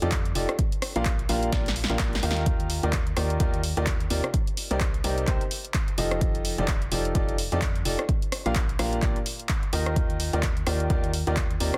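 A clear, boxy grand piano riff leads this bittersweet, soulful piano house piece at 128 BPM in 4/4, sitting up front with vintage 12-bit sampler grit, tape echo and sidechain pumping, tuned slightly flat to A4 = 437 Hz. Beneath it, a hollow, organ-like FM bass with a fast attack and dark, decaying tone pumps along in the low register, while a punchy analog drum machine supplies handclaps, hi-hat, rim click and snare with a tape-warm feel, re-recorded in a small room. An electronic kick drum joins at 0.1 seconds, sharing that analog character, and the groove carries a 58% swing on the 16ths. A drum fill between 1.5 and 2.5 seconds breaks the pattern, while the harmony cycles through F13, Bb6, Ebmaj9 and Cm7. Set in digital ambience with a dense, heavily limited modern master, this cut from a longer piece runs about 11.8 seconds.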